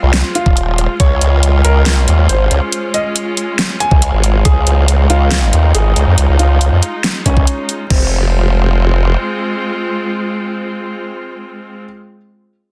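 At a half-time 139 BPM in 4/4, this aggressive, heavy wobble dubstep excerpt in F minor is cut from a longer piece. An overdriven, knocking electronic kick punches through up front in short bursts. Alongside it, a layered dubstep kit with a huge snare, hi-hat and crash cymbal carries its own overdrive until 8.0 seconds. Beneath them, a saturated formant-sweep wobble bass blends sawtooth and sine tones with chorus and overdrive, growling in the low register with a fast attack and compressed sustain until 9.2 seconds. Above, a dark, mellow grand piano carries the melody through tape echo, its intimate, vintage tone revealing audible action noise, while a lush, bowed studio string section holds sustained chords with vibrato and sidechain pumping. The harmony moves from F minor to D-flat and back to F minor as a new section arrives at 7.9 seconds, and the piano and strings continue to the end in a dry, dense, heavily limited modern master.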